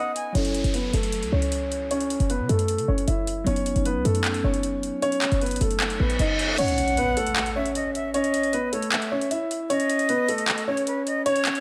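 Light reverb and a digital ambience frame this eerie, hard-hitting trap excerpt, which rides a half-time feel at 154 BPM in F# dorian. A dark, mellow baby grand piano carries the melody up front through a low-pass filter, its smooth, vintage tone ringing with long sustain over chords that move from F#m7 to Badd9/F#. In the background, glassy digital keys with chorus and a filter sweep give evolving, full-bodied accompaniment, while a punchy, tight 808-style bass with a noise layer sits up front with a fast attack and a decaying tail. The electronic trap kit, with metallic hi-hats, handclaps and crash cymbal, carries overdrive and a gritty 12-bit sampler character, aided by a downlifter, reverse cymbal and impact. At 6.6 seconds the keys and bass stop, the kick is muted, an impact lands, and an airy silver flute with vibrato and a slightly unsteady, tongued delivery returns with delay as a second line beside the piano.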